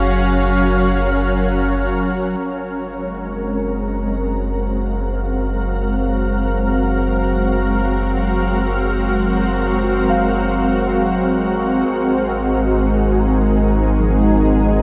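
In free time, this peaceful ambient passage, cut from a longer piece, opens with a shimmering, ethereal pad sustaining chords up front with chorus and an octave-up shimmer reverb, over a deep, round sub bass and a calm, organ-like drone in the background that fades in between 2.4 and 11.9 seconds. At 9.8 seconds, muted, felt-like synth keys enter softly in the background with arpeggios, colored by chorus, tape echo and shimmer reverb, as the harmony moves from a Gbmaj9#11 to an Abadd9 at 11.9 seconds. The whole sits in a huge, wet ambient reverb with a long, slow decay.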